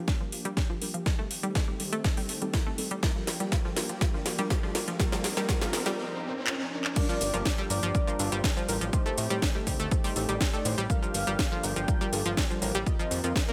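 Progressive house at 122 BPM in G minor, dreamy and bittersweet, opening with a build-up where filter sweeps open a very quiet, lush unison pad, a deep, warbling chord stab with tape echo and sidechain pumping, and a round analog pluck arpeggio over a punchy, overdriven kick and a house kit of cracking snare, metallic hats, shaker, handclaps and crash, with a faint riser from 2.3 to 7.0 seconds. After a short break, the drop lands at 7.0 seconds, bringing in a smooth, expressive synth lead with vibrato and chorus sitting in the background, followed at 7.2 seconds by a fat, nasal, detuned analog bass with sidechain pumping. The chords cycle through Gm7, Am7b5 and F7sus4, and light reverb gives the mix a touch of space.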